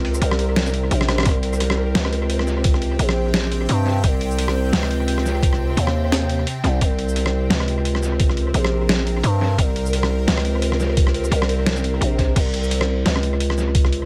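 A half-time drum and bass groove at 173 BPM in 4/4 with a light 16th-note swing sets a heavy, cinematic mood in this short excerpt, with a gritty, pitched-down sampler-style drum kit of snare, hi-hat, rim click, shaker and crash sitting up front through analog delay, joined by a thumpy electronic kick from 1.3 seconds after a drum fill at 1.0 seconds. Beneath it, a growling, buzzy 808-style bass with fast-attack, decaying notes holds the low end up front, while a tense, string-like bowed drone of detuned sawtooth chords with a noise layer, vibrato, phaser, built-in reverb and sidechain pumping sustains quietly behind. The mix is echo-heavy with light reverb.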